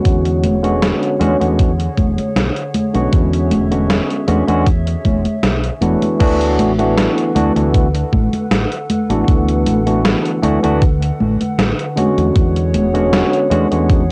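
A relaxed 78 BPM groove with a light sixteenth-note swing carries this nostalgic, dreamy vaporwave excerpt in D lydian, where a thumpy, up-front electronic kick and a gated 80s drum machine with congas, hi-hat, crash and a tape-warm gated snare sit under a round, punchy fingered electric bass, a bright, barky tine electric piano with chorus and analog delay, and a warbling, detuned pad with slow attack and long release, all drifting from E13 to D6 at 6.2 seconds and back at 12.0 seconds through a small-booth, cassette-recorded haze.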